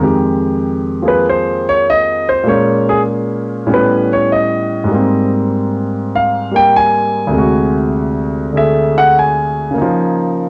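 A swung 4/4 lilt carries this cool, late-night solo jazz fragment, where a warm, intimate grand piano sits up front with natural tone, long sustain and audible action noise, moving through rich chords from Fm9 to Db69 in a moderate studio reverb, all colored by the worn, warbling pitch drift of old cassette tape.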